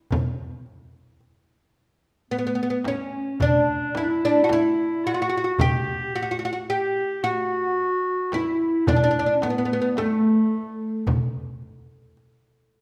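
A crisp metal-shell darbuka and a close, dry frame drum open this melancholic, soulful Turkish makam ensemble excerpt in 10/8 at 110 BPM, before a woody, plectrum-plucked fretless oud takes up the D makam rast melody at 2.3 s and a classical-style clarinet traces a second line, all set in a wet recital-hall reverb.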